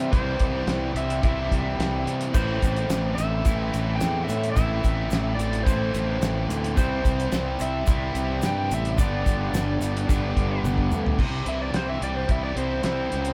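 Classic rock at 108 BPM in 4/4, gritty and brooding, played live in a small room with a thuddy, cloth-damped drum kit of dark cymbals, fat snare and tight kick under an up-front, growly fuzz bass and two bright overdriven picked guitars, one of them sitting in the background. An overdriven slide guitar carries the melody over chords moving from C through Am and G, while a grainy tube shaker joins at 2.3 s and stops at 11.0 s. A drum fill at 10.6 s leads into a short slide guitar solo from 11.2 s as this fragment of a longer piece closes.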